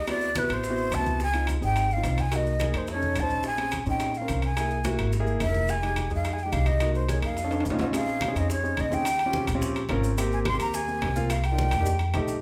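A breathy metal flute with vibrato, a soft attack and lifted highs leads this fiery, driving Afro-Cuban jazz excerpt in F minor at 214 BPM in straight 4/4, tuned to A4 = 436 Hz, with a woody, thumpy pizzicato upright bass and a warm, long-sustaining grand piano up front beside it. Ringing, saturated metal-shell timbales and very quiet, round bongos join bright low-tuned congas and grainy maracas that sit in the background, with the band playing live in one room inside a moderate large-studio reverb. Rich chords such as Dbmaj7, Cm7b5 and Abmaj9 move underneath, and drum fills punctuate the passage, the last running from 11.7 to 12.4 seconds.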